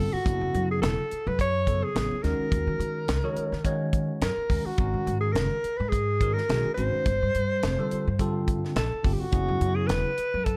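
A dark, lightly reverberant production frames this funky, slick electric jazz fusion excerpt, where a mellow alto saxophone with vibrato carries the up-front melody over a bell-like tine electric piano treated with phaser, a growly pizzicato upright bass and a tight funk drum kit with a high-tuned snare that enters at 0.3 seconds, moving through chords such as F#m11 and G9sus4 with a gentle sixteenth-note swing.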